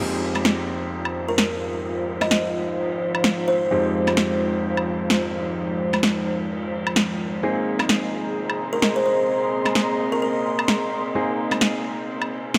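Bass house at 129 BPM in F minor with a swung sixteenth feel, this gritty, swaggering excerpt sets clear, long-sustaining baby grand piano stabs with digital delay over a deep, detuned sawtooth pad with chorus and an airy, breathy pad texture, while a punchy, tape-warm electronic snare and woodblock sit up front, a dark, soft-mallet ride cymbal stays in the background, and a buzzing, woody kalimba melody with delay appears at 1.3 and 8.7 seconds, all moving from Fm7 to Abadd9 in a lush hall reverb.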